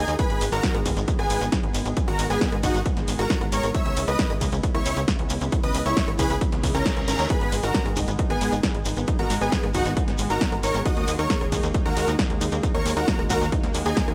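Driven by an overdriven, up-front electronic kick and a dry, punchy analog drum machine of hi-hat, ride cymbal, rim click and snare at 135 BPM in straight 4/4, this driving, bittersweet uplifting trance passage in G# minor pumps a tight, nasal sequencer bass, a lush, airy unison pad and a huge, euphoric detuned supersaw lead carrying the melody against a catchy plucky unison lead set higher, with a grainy shekere in the background and a reverse cymbal at 6.6 seconds before a round analog pluck arpeggio joins at 7.3 seconds over chords moving from G#m through C#m7 to D#sus4.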